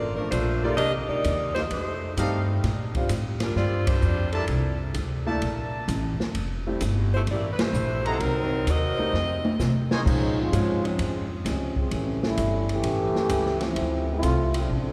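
A warm saxophone section carries the melody over a woody, thumpy upright bass played pizzicato at 129 BPM, opening a joyful, brassy big band swing piece in F major where a dark, boomy jazz drum kit joins while a clear grand piano and smooth-topped trumpet stabs sit behind, band accents land at 3.8 and 7.5 seconds, and after a drum fill a trombone section with light vibrato takes a solo from 10.1 seconds, the whole band set in a long church reverb.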